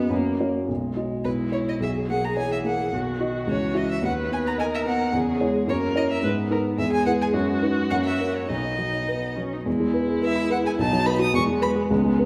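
Quick classical-period movement for piano quartet in B major at 107 BPM in 2/4, cheerful and spirited with a rubato feel, where a rich, smooth violin carries the melody with vibrato until 11.7 seconds, a distant cello sings a second line in the background, a focused viola fills the accompaniment, and an up-front, dark, intimate baby grand with audible action noise and short sustain anchors the harmony, all within a wet recital hall reverb, as the passage moves from B toward E near 9.7 seconds.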